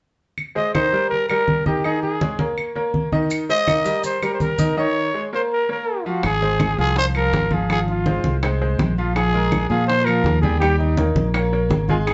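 Salsa at 164 BPM in Ab major, this sunny, festive fragment of a longer piece moves in a straight 4/4. Low-tuned congas with a ringing, hard-handed attack and woody claves set the groove from the start, while a raspy, growling trumpet carries the melody up front with vibrato and a punchy, pop-style edge. A bright concert grand piano sits close and present beside it, its brilliant yet worn tone full of deep bass and audible action noise, moving through chords such as Dbsus2, Bbmadd11 and Gbmaj7. Grainy, mellow maracas appear briefly around 3.3 seconds. At 6.2 seconds the second section brings in a round, fingered electric bass up front and low-tuned bongos in the background, as the harmony shifts through Ab69, Fm/Ab and Bb5 toward Eb7. The whole mix is heard from further back in a wet studio reverb, with a dark top end.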